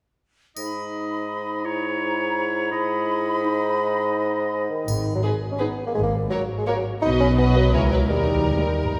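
A brisk 3/4 pulse at 167 BPM drives this playful, whimsical film cue in G# minor, a magical, sneaky fragment cut from a longer piece and set in a church-like hall with a long, wet reverb of 2.9 seconds. From 0.6 s an airy flute section, a clear, distant oboe and a close-miked clarinet share a second line above an up-front bassoon accompaniment with a soft attack, while a triangle adds brief touches. At 4.9 s muted cello and double bass sections enter on the bass and the triangle returns, then veiled, con sordino violins carry the melody and a second line with light viola support from 5.2 s, moving through G#m, F#/G#, B and A#dim/C# to D#.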